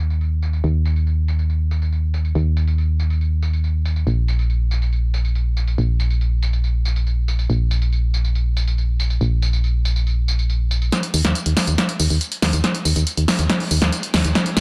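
A straight, steady four-four pulse drives this short uplifting trance passage, cut from a longer piece, with a mood that feels both driving and bittersweet. A punchy analog drum machine runs throughout, its hi-hat, punchy snare and tambourine sitting up front with a low-pass filter dulling the hats, snare, percussion and the small-room sound they were re-recorded in. Underneath, a solid FM bass holds the low end in a narrow span between Bb1 and Eb2, its tone round, dark and digital, with a fast attack and a decaying tail. From 10.9 seconds to the end at 14.6 seconds, the track shifts into a build-up crowned by a drum fill. The mix is dry and close, finished with a dense, heavily limited modern master.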